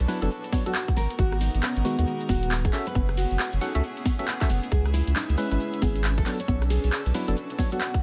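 A dry excerpt of moody, soulful two-step UK garage with a swung groove, built on an overdriven, up-front electronic kick that enters at 0.5 seconds, a thick, tube-saturated sub bass that drops out at 7.3 seconds, and a punchy analog drum machine of congas, handclaps, hi-hat, rim click and shaker, while a full-bodied nylon-string guitar carries the melody through dub echo, hollow organ stabs ring out with chorus and delay, and a biting chamber violin section and a cloudy granular pad pump in the background over Bm7, G#m7, F#m7 and C#m7 chords.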